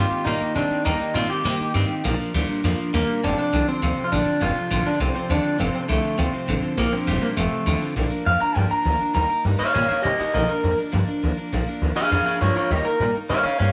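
Upbeat and rowdy, this short rockabilly excerpt charges along at 202 BPM in a straight 4/4, set in Bb major. Up front, an electric guitar through a small old amp carries the melody with a twangy, slightly broken-up bite, bathed in spring reverb and tape echo. Beside it, a second electric guitar at the edge of break-up plays a bright riff in a lower register until 7.9 seconds. A woody upright bass, plucked and also up front, drives the low end, while a picked steel-string acoustic guitar fills in full-bodied picked accompaniment with fresh-stringed sparkle. At 8.0 seconds the piece moves into a new section where a clean electric guitar solo arrives over chords shifting between Bb and Eb, all set in light reverb and small room ambience.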